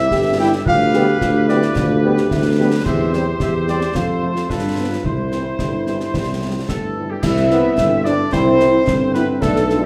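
Proud and spirited, this short cut from a longer military-style march for wind band moves at 110 BPM in a straight 2/4, set in C major. A mellow solo cornet carries the melody with light vibrato in a classical style, supported by a distant, roomy euphonium and a soft-attacked woodwind section with a smooth top, both playing second lines. Up front, a warm solo tuba anchors the bass, while concert snare drum, concert bass drum and clash cymbals with dark cymbal tone keep the march moving from 0.1 seconds. At 0.4 seconds a very quiet, tight French horn section adds accompaniment and a dark trombone section sits in the background with sustained chords. The harmony moves from C through G7, F and back to C, with a new section arriving at 7.2 seconds, all framed by a recital hall reverb that gives the band a churchlike sense of space.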